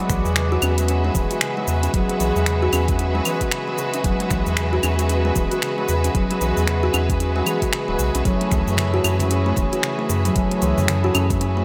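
A 16th-note swing of 60% gives this organic downtempo excerpt at 114 BPM in 4/4 a loose, rolling lilt. That groove comes from a deep electronic kick and a produced afro-pop kit of claves, finger snaps, shaker and metallic hi-hats, both set in small room ambience. The mood is mystical and warm, resting on an E7 chord that moves to F#m7 at 8.3 seconds. A round sine sub bass with tube saturation and sidechain pumping anchors the low end. A reedy, breathing pedal harmonium, close-miked and dry yet coloured by vintage 12-bit sampler grit, tape echo and pumping, supplies the accompaniment, while a lush bowed string section holds sustained chords with vibrato, portamento and a smooth top, also pulsing with the sidechain. Alongside them a woody, hollow-box kalimba rings out airy thumb-plucked arpeggios through tape echo, and at 8.8 seconds a very quiet, snappy cajon struck with hard hands joins, all within light small-room reverb.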